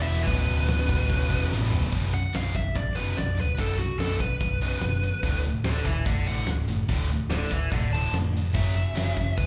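A straight 4/4 pulse from a huge arena drum kit with a fat snare and punchy kick carries this heavy, aggressive hard rock excerpt, heard as a live gig through a club PA, where a growly overdriven picked bass and three distorted rhythm guitars, one very quiet and double-tracked playing only until 1.9 seconds and again from 8.5 seconds, pound out low riffs beneath a dark, high-gain lead guitar whose solo begins at 1.9 seconds, following a drum fill from 1.5 seconds, its tone dressed in slapback echo and digital delay.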